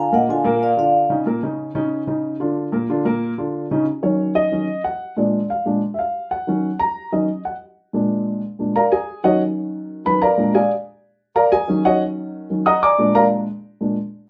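Latin music at a brisk 184 BPM in straight 4/4, this fiery, driving excerpt from a longer piece sits in Eb minor. A vibraphone played with soft mallets opens the melody up front, its ringing, close-miked tone carrying a medium motor vibrato, but it is heard only until 1.1 seconds. A dark upright piano with a woody, short-sustained sound supplies the accompaniment from the start and takes a solo from 3.9 seconds, playing until 14.0 seconds. After an opening Bb chord, the harmony alternates steadily between Ebm7 and Bb7, giving the solo a tight, insistent two-chord vamp. A wet small-room reverb frames the recording, while the piano's voice stays mellow.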